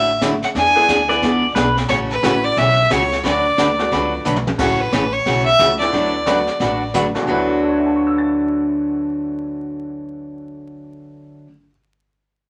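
Playful and down-home, this brisk swung western swing cut, taken from a longer piece, puts a clear, biting fiddle up front over picked dreadnought acoustic guitar, thumpy gut-string upright bass, a brushed drum kit with dark cymbals and a fill at 4.2 seconds, and a brilliant, slightly detuned upright piano, while a pedal steel guitar slips in briefly at 1.1 seconds, all set in a wet room with vinyl crackle.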